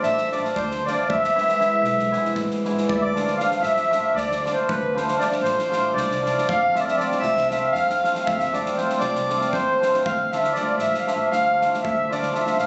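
A reedy, close-miked accordion and a smooth, classical-style soprano saxophone open together in the same high register in this bittersweet, virtuosic Balkan wedding-band tune, the accordion carrying the melody while the saxophone plays a second line. The pulse runs at 234 eighth-note beats per minute in a straight 7/8. Beneath them an acoustic cimbalom sits up front, its hammered strings shimmering and ringing, while a woody pizzicato upright bass on steel strings holds the low end more quietly. A big rock drum kit adds a punchy kick and a medium-tuned snare with an airy, polished big-room character. The harmony moves from D minor to E, and after 2.9 seconds a longer passage shifts between D minor and F. The sound is that of a phone in a small, moderately reverberant room, with a dull, capped top end, and the clip is cut from a longer piece.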